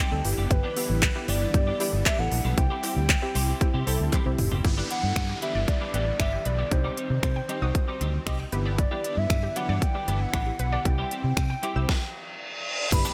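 A straight 4/4 pulse drives this euphoric, summery dance-pop excerpt, carried by an up-front electronic pop kit with a punchy kick, deep snare, crisp hats, shaker, finger snaps, handclaps, toms and crash, alongside a dark, round, foam-muted vintage fingered electric bass that pumps with the sidechain. A hollow, woody clarinet-like synth lead with vibrato, chorus and digital delay sings the melody over huge, lush supersaw chords that sit pumping in the background. A warm, clean, compressed twelve-string electric guitar plays a riff while nasal, detuned sawtooth chord stabs decay in accompaniment, and a very quiet, close and dry group handclap joins briefly near the start. After a drum fill, the second section opens at 4.6 seconds with a warbling, bright unison pluck tracing delayed arpeggios and an electronic downlifter. The chords move between G6, C and Cm, and at 11.9 seconds the band stops for a reverse cymbal that lands on an impact at 12.9 seconds, all framed by light reverb and a bright 1980s-style digital sheen.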